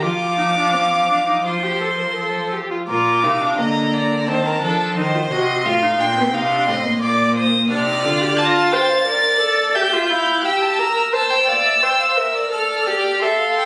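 Serious and driving, this baroque-style string quartet fugue is cut from a longer piece and moves in a straight, steady four. The first violin carries the melody high in its range with a warm, expressive tone, soft attacks, vibrato and portamento, while the second violin plays a focused second line beneath it. The viola fills in the accompaniment with a rich, vibrato-laden sound and expressive portamento. The cello anchors the bass with soft attacks and sliding, expressive phrasing until it stops at 8.4 seconds, leaving the upper three strings to carry on until 13.7 seconds. The harmony moves from F through Bb and passing diminished chords before closing on C7 and F. The whole ensemble sits in a wet recital hall with a 1.6-second reverb, and the recording has the feel of a phone capturing the players from within the room.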